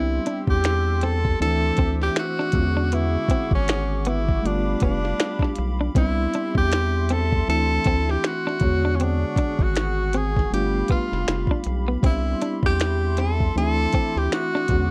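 This is a dry, dark mix with little reverb, cut from a longer neo-soul and R&B piece at 79 BPM in 4/4 with a light swing on the sixteenths. A breathy tenor saxophone carries the sultry, soulful melody up front, its jazz-style subtone, vibrato and scooped notes touched by a slapback echo. Beneath it, a reedy electric piano with fast tremolo plays the accompaniment. A clean semi-hollow electric guitar adds a compressed, fingered second line and drops out at 14.7 s, while a hollow, flute-like pad with chorus holds gentle sustained chords in the background. A round analog bass sits deep and forward, and a minimal electronic drum kit enters at 0.3 s with a soft kick, tiny snare, clicky hats and finger snaps, re-recorded in a small room. The harmony cycles through Cmaj7, Dsus2, E13 and G7.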